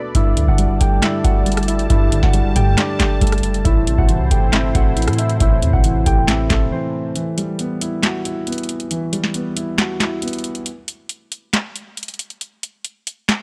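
This menacing, hard-hitting trap excerpt in E minor opens with a thumb-plucked, ringing concert harp carrying the melody through a low-pass filter and digital delay. Beneath it sit an up-front, dark and mellow grand piano with a vintage tone, and an airy, detuned sawtooth pad with chorus holding sustained chords. In 4/4 at 137 BPM with a half-time feel, a booming, dry analog drum machine hits with a deep kick, tonal snare, metallic hi-hats, handclaps and rim clicks. A clean, sine-like 808-style bass sits boomy and dark in the background. The chords move from Gsus2 to Am and then, after a short break when the bass stops at 6.7 seconds, to Emadd9. The harp and then the piano drop out, with the piano ending at 10.7 seconds, and the drums play alone until 13.4 seconds, all in a close, nearly reverb-free sound.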